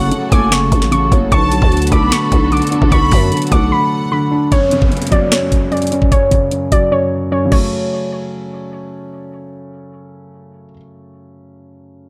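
Trap hip hop at 150 BPM in a half-time feel in F# minor, menacing and eerie, cut from a longer piece, where a soft, round detuned pluck carries the melody through a chorus, low-pass filter and delay over a dark, mellow grand piano with audible action noise, a floating sul tasto violin section with delay, veiled con sordino strings, a growling 808 bass, a knocking, up-front trap kit with sharp snare and bright hats, a brief tight brass stab at 1.3 seconds and a background downlifter from 4.5 seconds. The drums are muted from 6.9 seconds, and once the pluck fades at 8.9 seconds the piano carries on alone to 12.1 seconds, all in a dry, close sound.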